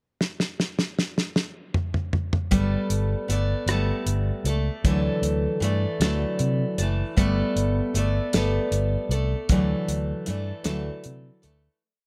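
A damped 70s drum kit opens the piece with a fill across the pickup bar from 0.2 s, its fat snare and tight kick sounding dry with a rolled-off top, before a picked dreadnought steel-string acoustic guitar strumming full-bodied open chord shapes and a round, amped fingered electric bass playing driving eighth notes join at 2.5 s for a nostalgic, open-road folk and heartland rock verse in a straight 6/8 at 52 BPM in G major, moving between Gadd9 and Dadd9 under light reverb and a dark, warm production until the fade-out from 9.5 s.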